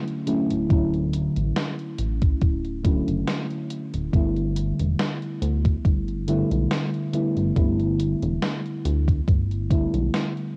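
In this dreamy, woozy vaporwave fragment, a gated 80s drum machine sets its hi-hat and snare up front with gated reverb and cassette grit, soon joined by a thumpy, tape-warm electronic kick. A round, soft FM electric piano drifts through phaser, lush chorus and analog delay, moving from Dmaj9 to G6 at 4.1 seconds, while a glossy, dark chorused synth bass with pulse-width movement and tube saturation enters at 0.5 seconds. The dry, homemade cassette sound lends the loose swing a hazy, lo-fi intimacy.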